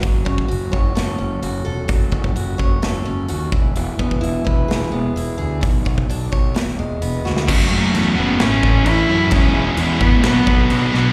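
A bowed cello with a soft, floating tone carries the melody from 7.7 seconds in this angsty, dark cut from a quiet-loud alternative rock piece in F# minor at 129 BPM, where a boxy picked archtop acoustic guitar plays arpeggios with slapback echo until 7.5 seconds over a growly, overdriven fingered electric bass and a punchy, up-front rock drum kit, before a drum fill at 7.3 seconds ushers in riffs from a very quiet double-tracked overdriven electric guitar, a bright scooped high-gain guitar and a dark, thick fuzz guitar, the performance heard live through a venue PA with recital hall reverb.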